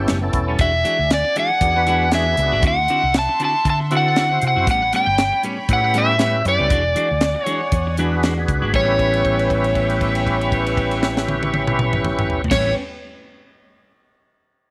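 An overdriven slide guitar sits up front with a dark, overdriven tone and slapback echo, carrying the melody from 0.6 seconds in this laid-back, swaggering soul blues cut from a longer piece. Beneath it, a tonewheel organ fills out the accompaniment with a full, lightly overdriven sound through chorus vibrato and a slow rotary speaker, while a clean electric guitar adds bright, twangy, compressed stabs. A fingered electric bass gives punchy, amped low end, and a tight funk drum kit, dry and polished with a high-tuned snare, drives a straight-eighth groove at 118 BPM in 4/4 with a light swing on the sixteenths. A studio string section holds smooth, reedy sustained chords in the background with a period, gut-string character. The harmony moves through ninth chords in A mixolydian, and at 8.7 seconds the music shifts into a new section marked by a held note lasting until 12.5 seconds, set in light reverb and small room ambience.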